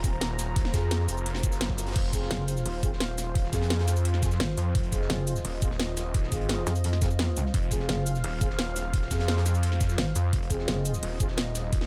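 Aggressive and tense, this dark technical drum and bass excerpt sits on a single F minor chord, driven by a knocking electronic kick, a layered kit with a cracking snare, metallic hats, cabasa and crash, and a gritty, saturated breakbeat kit tucked in the background. Up front, a snarling saw bass growls with distortion and tube saturation, joined at 2.3 seconds by a metallic FM wobble bass with chorus. Above them, a deep, moody analog pad holds sustained chords with chorus and sidechain pumping, while a tight classical-style brass section adds background stabs through a digital delay, all in a dry space with little reverb.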